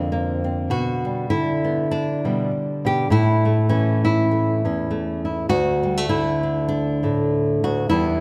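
A nylon-string guitar carries this short folk piece alone, fingerpicked in a classical manner and placed up front with a warm acoustic tone. The mood is pastoral and peaceful, moving at 100 BPM in 4/4 with a gentle swing on the eighth notes, in D major and tuned slightly below standard pitch. The guitar ranges from D2 up to G4. The harmony opens on Bbadd9 before passing through G/B and A to settle on D at 5.5 seconds. A moderate concert hall reverb surrounds the instrument, giving it the spacious air of a church or hall. The 8.2-second clip is cut from a longer piece.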